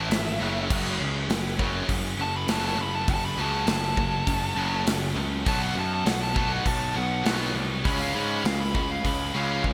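A straight 4/4 hard rock groove at 101 BPM drives this menacing F# dorian passage, cut from a longer piece, with a punchy, up-front big rock drum kit carrying bright cymbals and gated reverb, and a growly fuzz bass that is overdriven and sits up front. Three distorted rhythm guitars grind out riffs in the background, one heavy, high-gain and double-tracked, another sludgy and overdriven, a third tight and bright, all moving through F#m, B and C# chords. Over them a dark, smooth lead guitar solos the whole way through with overdrive and delay, all set in a lush hall reverb with a bright 1980s-style digital sheen.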